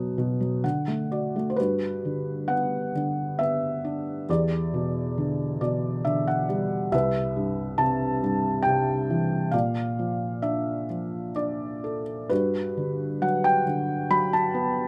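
In a gently rubato 3/4 at around 62-70 BPM, this short classical excerpt in G major unfolds as a peaceful, calm solo for felt-muted upright piano, reaching from C2 to B5. The thick felt gives the piano a soft, mellow, intimate tone, placed up front with audible action noise caught by close, detailed microphones and a light reverb. After a brief opening phrase, the lyrical passage from 1.6 s moves through Gmaj7, Em7, Cmaj7 and Bbmaj7 before returning to Gmaj7, with small fills colouring the early bars.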